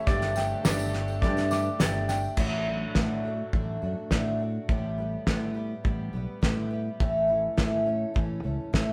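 Indie folk with a hopeful feel, this excerpt from a building arrangement opens with a shimmering, octave-doubled twelve-string acoustic guitar, a round, punchy fingered electric bass and a cloth-damped, thuddy drum kit with a fat snare, along with a jingly tambourine, a very quiet sul tasto chamber string section, clear arpeggios on one upright piano and a mellow felt-muted upright piano that adds a fill from 1.5 seconds, until by 2.4 seconds the strings, both pianos and the tambourine have dropped out and a full-bodied fingerpicked steel-string acoustic guitar enters, the band sounding live in one room under wet reverb.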